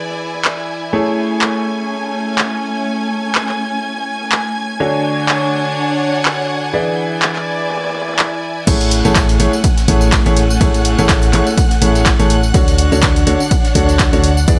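Lightly reverberant, this feel-good piano house clip runs at 124 BPM in A major with a gentle 16th-note swing, moving through E7, Amaj7 and Dmaj7. An up-front, clear grand piano with long sustain and a worn, natural tone plays the riff through a digital delay, while a lush, vibrato-rich violin section holds high sustained chords and a focused studio string section fills in the middle. From the start, a very quiet, gritty, sampler-style breakbeat kit adds hi-hat, snare and tambourine, joined almost immediately by a punchy analog drum machine with crash, ride, hi-hat and handclaps that sounds re-recorded in a small room. At 8.7 seconds the drop arrives, bringing a punchy, tape-warm electronic kick, a dark, round FM bass with a fast attack and decaying notes, and a background tambourine layer carrying egg shaker and group handclap. Sidechain pumping on the piano, strings, violins and bass gives the joyful groove its breathing lift.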